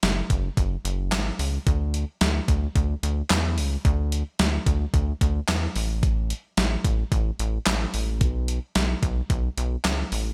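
Lightly reverberant, this synth-pop fragment carries a melancholic, nocturnal mood, with a clean 12-bit digital drum machine up front playing a thumpy kick, medium-tuned snare, hi-hat and handclaps with a tape-warm, large-room character, while a rubbery, hollow, bouncy square-wave bass with a resonant filter pluck sits low and equally up front alongside it from 0.0 to 10.3 seconds.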